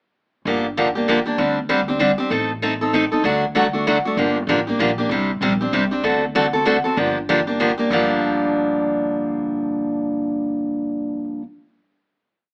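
Acoustic string swing in the jazz manouche style, this fiery, virtuosic little piece in G minor drives along at 193 BPM in 3/4 with a swung eighth-note feel. Up front, a bright, full-bodied picked steel-string acoustic guitar with fresh strings plays rhythm on every beat, short and accented on two and three, through a progression opening on Gm7 and returning to Gm7 at 7.0 seconds before the final chord section at 7.9 seconds. Behind it, a woody, thumpy upright bass on gut strings plucks root-and-fifth lines with walk-ups, all set in a moderate studio reverb and filtered to an AM radio sound.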